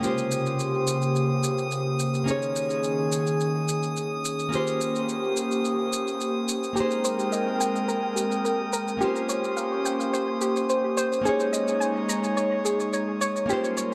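An up-front, breathy pad with chorus and a filter sweep running throughout carries this wistful, smooth sunset chillout excerpt at 107 BPM in Bb dorian, over a fingerpicked classical nylon-string guitar with dub echo, a tape-warm layered electronic shaker, and a faint, glassy texture of drifting overtones, while a soft, round, ring-modulated pluck enters at 6.8 s with chorus and dub echo for mellow arpeggios, all bathed in a wet spring-reverb mix that cycles through Bbm69, Eb7sus4 and Abmaj9.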